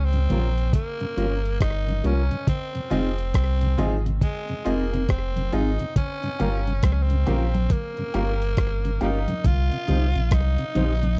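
A raspy tenor saxophone carries the melody through dub echo over a deep, round sub bass and a gritty, compressed drum kit of thumpy kick, hi-hat and rim click, giving this short roots reggae excerpt a meditative, serious mood with a swung feel. A slow-rotary tonewheel organ with key click and slapback echo fills in the harmony, while a dark electric guitar drenched in lush chorus and dub echo and thick-skinned congas sit in the background. A bright, slightly detuned upright piano with audible action noise adds stabs from 2.9 to 9.2 seconds, all captured in a dry, close 1970s-style studio sound.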